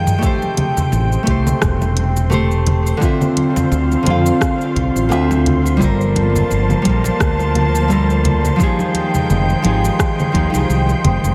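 A full-bodied, fingerpicked nylon-string guitar sits up front in this sunset chillout excerpt, its deep classical tone carrying a touch of finger squeak through delay and shimmer reverb as it accompanies from the first moment. Around it, an airy, breathy pad holds sustained chords with a slow attack, long release and detuned chorus shimmer, while a dark, round fingered electric bass enters at 0.9 seconds, direct and up front. The groove moves at 86 BPM in 4/4 with a gentle swing on the sixteenths, in A phrygian, passing through Am7, Dm9, Gm9 and Fm9. A produced R&B kit with tape-warm hats, cabasa, congas, rim click and toms joins a layered, deep electronic kick, while separate bright, thin-skinned congas sit very quietly close by. High above, a dark, wind-like tuned noise texture breathes in with a slow attack, and the whole mix is dreamy and soaked in plate reverb, smooth and warm in mood.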